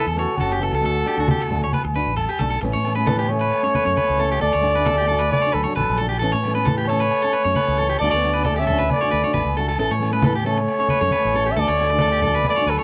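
Highlife guitar band music in A mixolydian, joyful and carefree, moving at a straight 134 BPM in 4/4 over a simple alternation between A and D chords in this short cut from a longer piece. A mellow trumpet carries the melody up front with light vibrato and scooped, jazz-style notes, while a breathy alto saxophone sits lower in the background on a second line, its subtone soft-attacked, close and whispered. A slightly broken-up, twangy electric guitar picks arpeggios up front, and a dark nylon-string guitar fingerpicks the accompaniment with audible finger squeak. A fingered electric bass, direct and amped, anchors the low end, and from 0.4 seconds distant congas, low-tuned and thick-skinned under soft hands, join ringing agogo bells in the background as if from a large room. The whole has the homespun feel of a cassette home recording with light reverb, and the saxophone and both guitars carry the grain of tape.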